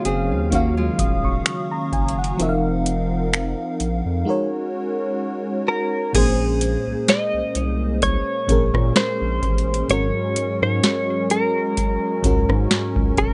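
A booming, overdriven analog drum machine sets a slow 64 BPM contemporary R&B groove in Bb minor with a light sixteenth-note swing, its deep kick, crisp snare, metallic hats, finger snaps, rim clicks and crash sitting up front over a thick, saturated sine sub bass. A lush, warbling FM electric piano with a soft pad layer and a smooth, detuned sawtooth pad that pumps against the beat carry chords through Ebm9, F7sus4 and Ab9sus4, while a fingerpicked nylon-string guitar plays delayed arpeggios with audible finger squeak until 2.1 seconds. At 5.7 seconds a bright, clean, direct-recorded electric guitar takes the melody with analog chorus and delay, moving into a Bbm9 passage at 6.1 seconds in this longing, sensual, dry-sounding excerpt cut from a longer piece.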